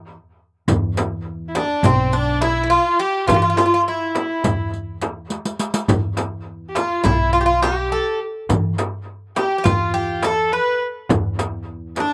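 A woody upright bass opens this soulful, melancholic Turkish makam ensemble passage, its steel strings plucked in the low register before the percussion joins at 0.7 s. The pulse runs at 207 eighth-note beats per minute in a straight 9/8, set in E makam kurdi with tuning at A4 = 439 Hz. The percussion layers a large, deep metal-shelled darbuka played with soft hands, crisp and saturated with a slapback echo, alongside a small, close frame drum and a riq whose jingles sparkle dry and near. A bowed kamancheh enters at 1.5 s as the second line, earthy with portamento and placed up front, and a Greek bouzouki takes the melody a moment later with a metallic, double-strung bite, some strings doubled at the octave, sitting most prominently in the mix. A drum fill between 5.3 and 5.9 s punctuates the passage, which is cut from a longer piece and heard outdoors with little reverb, giving it an open, immediate sound.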